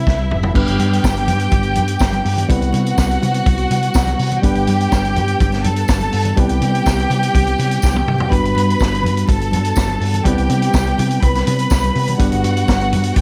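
A lightly reverberant studio sound carries this joyful, celebratory disco excerpt, where an up-front vintage drum kit with dark cymbals and a punchy kick opens on a short fill and fills again at 7.8 seconds, a round, hollow-body fingered electric bass and a worn, lightly overdriven tine electric piano move between Cmaj7 and G chords, a lush bowed violin section with vibrato carries the second line, very quiet bright congas add color, and a jingly tambourine sits in the background.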